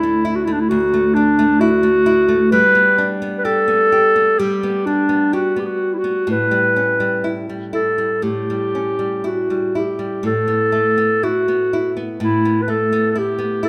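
A vintage-toned clarinet and a fingerpicked flamenco guitar begin together, both up front, in a tender, pastoral Celtic slow air that moves in rubato at roughly 58-67 BPM in 4/4. The classical-style clarinet sings the melody between D4 and B4. The warm acoustic guitar, ranging from D2 to G4, supports it through Dadd9, G, A7 and Asus2, reaching the final chord at 10.2 s. A moderate recital-hall reverb surrounds this short passage taken from a longer piece.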